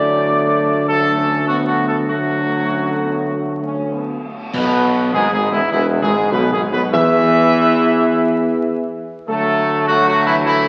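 Majestic and triumphant, this classical ceremonial fanfare in E mixolydian moves at 100 BPM with uneven beats, as a warm, tight trumpet section carries the melody up front over sustained French horn and trombone chords and a mellow, roomy tuba bass, while dark cymbals and concert bass drum join from 2.1 to 5.7 seconds around a full band accent at 4.5 seconds, all heard through a wet scoring-stage reverb and the crackle of a very old 78 rpm record.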